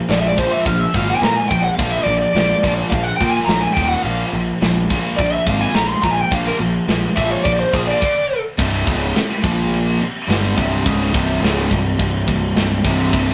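Heavy metal at 106 BPM with an epic, dark mood, cut from a longer piece: a tight acoustic drum kit with crash, tight kick and medium-tuned snare sits up front beside a round, fuzzy picked bass, while a bright overdriven electric guitar and a scooped high-gain guitar play riffs in the background as a dark, bluesy lead guitar solos until 8.4 seconds, after which a double-tracked fuzz guitar riff and a very quiet, lush bowed string section with vibrato enter at 8.6 seconds, all captured with light reverb and tube saturation in a rough rehearsal-room sound.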